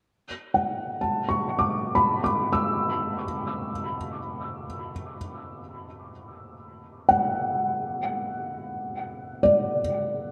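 A felt-muted upright piano fades in from the start, its arpeggios appearing at 0.5 seconds and emerging out of the hush in this short, spacious ambient piece cut from a longer work. The piano sits up front, with a dark, intimate tone and the audible mechanical noise of its action under the thick felt. Its figures stay in a high register, between D5 and E6, and rest on a single Bm7 chord throughout. A dub echo trails the piano, and a wet spring reverb with a long tail gives the echo-heavy mix a serene, floating calm. The passage ends at 10.3 seconds.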